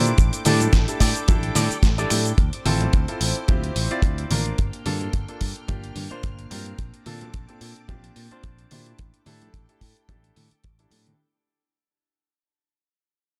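Groovy and cosmic, this nu-disco excerpt rides a gently swung sixteenth-note feel as it fades out across its whole length, cycling through A7sus4, Dm7, Gm7 and Bbmaj7 chords. A tight, dry kick drum sits up front beside a gritty, overdriven sampler-style kit of snare, hi-hat, finger snaps and cabasa, while hard-hand congas with a band-limited, vintage tone stay in the background. A punchy picked electric bass carries the low end with sidechain pumping. A clear, polished baby grand piano plays accompaniment through a low-pass filter and delay, and a lush, mellow string machine holds sustained chords behind it, with slow attacks, a sub octave and ensemble chorus. A twangy, bright electric guitar riff with an envelope filter, subtle chorus and delay plays from the start of the clip and stops at 2.3 seconds, all in a small room ambience.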